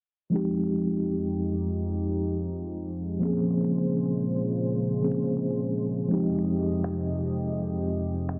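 A gently swung sixteenth-note feel in 4/4 sets the unhurried pulse of this short contemporary R&B fragment, cut from a longer piece, with a longing, moody atmosphere. A mellow tine electric piano carries the accompaniment throughout, its clean tone sounding as if through built-in speakers and sitting up front. Beside it, a warm analog pad holds sustained chords across the whole passage, its detuned sawtooth voice smooth and soft in attack, thickened by chorus. Only at 6.8 seconds do electronic finger snaps arrive, sampler-style, compressed and gritty with overdrive, sitting low in the mix. The harmony moves from Fm9 to Bbm7 at 3.2 seconds and back to Fm9 at 6.1 seconds, while a filter sweep runs through the entire passage and light reverb and a low-pass filter keep the overall sound soft and hazy.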